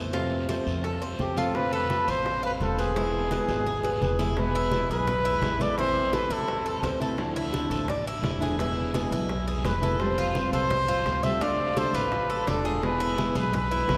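Sultry and danceable, this Cuban son and guajira groove in a straight four moves over a shadowy progression that keeps circling from F and Dm7 back to E. A fingerpicked nylon-string guitar gives full-bodied classical accompaniment, while the Cuban tres spins bright, metallic arpeggios on its doubled strings, and a woody, thumpy pizzicato upright bass with gut strings anchors the low end. Low-tuned, damped congas with a thick skin sit in the background beside tight, high-tuned bongos played very quietly and a raspy, vintage-sounding guiro. Up front, a close-miked breathy trumpet carries the solo melody with mellow vibrato and a whispered, intimate pop-style tone, entering at 1.2 seconds, dropping out at 6.8 and returning at 9.7. A short drum fill marks the shift into the second section, and the whole excerpt sits in a wet cathedral reverb with a long, church-like tail.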